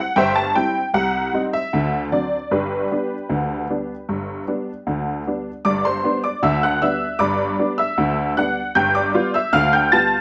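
Heard through close, detailed microphones in a small room with a moderate touch of reverb, this short cut from a longer ragtime piano piece has a vintage feel. A lone honky-tonk upright piano carries everything, its detuned, jangly voice sitting up front and spanning from deep bass notes to high treble. The mood is lively and jaunty, set in a straight two-beat metre. The harmony moves from C to C minor, then through D7 to G, and a G7 arrives at 8.8 seconds. The passage falls into two statements of the same section, the second beginning at 5.7 seconds and running until the cut at 10.2 seconds.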